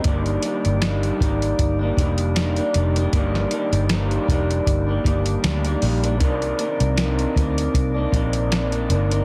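A hazy, dreamy bedroom-pop excerpt in Eb major at 78 BPM with a lazy 16th-note swing opens with a soft vintage rhythm box of deep kick, crisp snare and metallic, overdriven hats, a round, foam-muted fingered bass up front, a bright, twangy electric guitar through a small old amp with lush chorus and warbly pitch drift, and a flute-like tonewheel organ with key click, slow rotary speaker and cassette-tape colour, all moving from Ebmaj7 to Cm9 at 6.2 seconds beneath light reverb and a heavily compressed, radio-like sheen.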